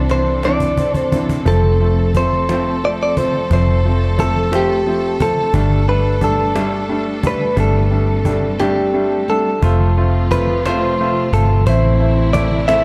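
An aching, dramatic six-eight pop ballad moves at 59 BPM, heard here as a short cut from a longer piece with a dark, warm production and light studio reverb. A bright, clean electric guitar carries the melody up front, compressed and picked, bathed in lush chorus and tape echo. Beneath it, a close studio string section holds bowed chords with focused vibrato, while a clear grand piano with short sustain fills in the accompaniment. A vintage foam-muted fingered electric bass sits round and punchy near the front, and a woody cajon with faint snares sounds distant, as if in a large room, opening with a fill over the first 1.5 seconds. The harmony moves from Cadd9 through F and Gsus2, then shifts at 9.6 seconds into a new section that turns from F to Am.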